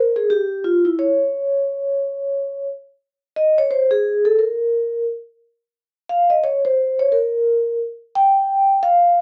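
A vibraphone played with soft mallets carries this short hip hop fragment entirely on its own, from 0.0 to 9.2 seconds. Its tone is metallic and ringing, with a slow motor vibrato and a vintage, band-limited character that gives it a mellow, cool mood. The instrument sits up front in a moderate studio reverb, moving between E4 and G5. The feel has a swung sixteenth-note lilt in 4/4. Cut from a longer piece, this passage rests on that single vibraphone voice.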